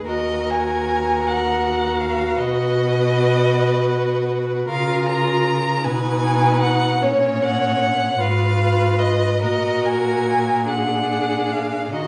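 The string quartet sits in a wet recital-hall reverb, as if heard in a church or concert hall, with a decay of about 1.2 seconds surrounding the players. This is a slow, elegiac romantic movement in E-flat minor, moving at roughly 45 to 54 dotted-quarter beats per minute in a rubato 6/8 that lends it a melancholic, breathing sway. The warm first violin carries the melody from 0.1 seconds, singing high in its range with vibrato and portamento; it sits up front yet keeps a slightly distant quality. Beneath it, the second violin adds a rich, expressive line with its own vibrato and sliding portamento, while the clear, focused viola holds the inner accompaniment. The cello, up front with a smooth top, anchors the bass with bowed vibrato. The harmony drifts from E-flat minor through B major and a chain of inverted chords, passing a diminished sonority before settling on a B-flat seventh at 10.7 seconds, leaving this fragment of a longer piece suspended and unresolved.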